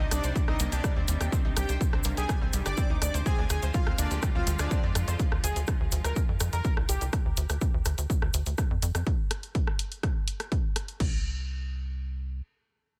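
A straight 124 BPM pulse drives this hypnotic, dramatic melodic techno drop, with a heavy, tape-warm electronic kick up front, a techno kit of crash, warm hi-hats and rim clicks, and a grainy tube shaker in the background. A tight, punchy sequencer bass rides the sidechain pumping, as do a thick, bold unison lead with subtle chorus and delay, lush pluck arpeggios and a smooth supersaw second line, both soaked in dub echo, and a biting, earthy string section holding sustained chords over Cmadd9 and Ddim. The upper parts fall away by about 7.1 seconds, the drums carry on to 11.1 seconds, and the bass plays alone until 12.4 seconds in this dry, close-sounding cut from a longer piece.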